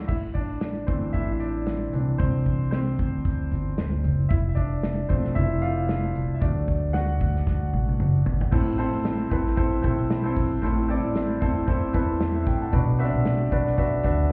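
A bright grand piano leads this anthemic, warm piano-driven pop excerpt, its polished, brilliant tone and long sustain sitting up front as it carries a solo over the first stretch, from 0.1 to 8.5 seconds. Underneath, a woody upright bass played pizzicato on steel strings holds the low end close, while a loose indie drum kit with dark cymbals, a medium-tuned snare and a tight kick moves at 114 BPM in 4/4 with a light swing on the sixteenths. The harmony cycles through Am, Cadd9, F and D. A drum fill at 7.5 seconds leads into a second section that returns to Am and moves to Bm. The whole mix sounds muffled, as if heard through a wall, with club reverb around it, and the passage is cut from a longer piece.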